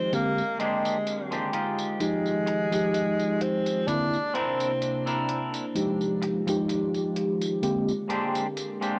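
A clear tenor saxophone opens this nostalgic, woozy vaporwave fragment at 64 BPM in F dorian, its jazz-style solo line carrying light vibrato and a soft attack while sounding distant and roomy, roughened by 12-bit sampler grit and tape echo, until it falls away at 5.3 seconds. Underneath, a mellow tine electric piano plays up front through chorus, cassette tape and analog delay, while a warbling, detuned pad of sawtooth and triangle tones sits in the background with slow attack and long release, its filter sweeping across the whole passage. Electronic hi-hat and tambourine enter at 0.1 seconds, sampler-style and re-recorded in a large room, muffled by low-pass filtering and moving with a gentle 16th-note swing. A bright, picked clean electric guitar riff joins at 0.6 seconds, lush with chorus and analog delay and dusted with sampler grit. The chords drift from Bb13 through Fm9 and C9, then back through Fm9 to Bb13, and the cassette home recording, with moderate studio reverb and its top end capped at 10.6 kHz, gives this cut from a longer piece a hazy, faded sheen.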